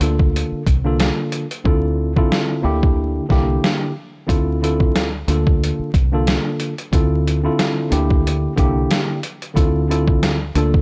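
Boom-bap hip-hop with a gritty, moody swing, where a worn, slightly out-of-tune tine electric piano with cassette-tape coloring plays chords up front over a round, punchy fingered electric bass and a thumpy, overdriven sampler-style drum kit whose hi-hats drop out from 1.7 to 4.3 seconds, all in a dry mix dusted with vinyl crackle.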